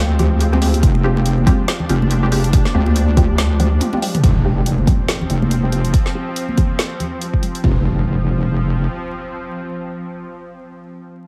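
This heavy, cavernous slice of deep dubstep, cut from a longer piece, opens straight into a drop with a saturated, wobbling bass up front over a bed of vinyl crackle. A string-like, nasal drone soon joins, holding sustained chords with a slow attack and vibrato. Muted, detuned chord stabs pluck through phaser and dub echo, while a deep house kit supplies a woody snare, dark hats and toms, and bright, high-tuned congas sit in the background. A layered kick enters up front at 0.8 seconds, anchoring a swung, half-time groove. A drum fill leads into an electronic impact at 4.2 seconds, after which a filter sweep works on the stabs. The bass drops out at 8.9 seconds, leaving the drone, stabs and the distant impact over the dry, crackling sound.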